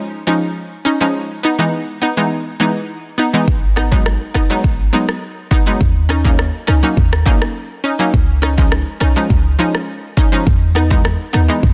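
A detuned analog pluck opens this hypnotic, sultry dancehall excerpt in G# minor at 103 BPM, playing alone from 0.3 seconds with a warm, round, bright sawtooth-and-square tone, a noise layer and chorus, sitting up front in the mix. Its fast-attack, decaying filter pluck carries a chord progression moving from C#add9 to Emaj7. At 3.5 seconds a clean, sine-based 808-style bass arrives with a deep, boomy, mellow low end. The electronic afro-pop drum kit enters at the same moment, its deep kick, dark hi-hats and rim clicks pushed up front in a straight 4/4 groove. From there the harmony cycles through G#m7, D#m7 and back to C#add9 and Emaj7. The whole excerpt sits in a digital ambience with a dense, heavily limited modern master.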